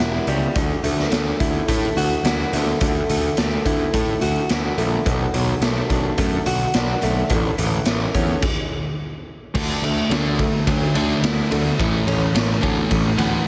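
Heavily compressed into a radio sound with light reverb, this brooding, angsty quiet-loud alternative rock excerpt opens with a woody, boxy old ladder-braced acoustic guitar picking arpeggios through digital delay. Beneath it sit a growly, up-front fuzz bass and a raw garage drum kit with a punchy kick and a gritty, pumping room. After a stop at 8.4 seconds, a dark, sludgy distorted guitar enters up front at 9.5 seconds with an overdriven riff as the chords shift from Dadd9 to Aadd9.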